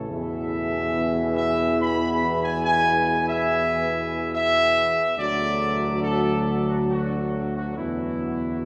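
In a straight, stately triple metre, this regal, majestic classical brass passage, cut from a longer piece, puts a dark, soft-attacked trumpet section up front on the melody, sounding distant and roomy. Beneath it, clear trombones and a horn section with light vibrato hold sustained chords in the background, while a mellow, roomy solo tuba carries the bass. The harmony moves from E to D at 5.2 seconds and settles on Esus2 at 7.8 seconds, wrapped in the long, wet reverb of a church or concert hall.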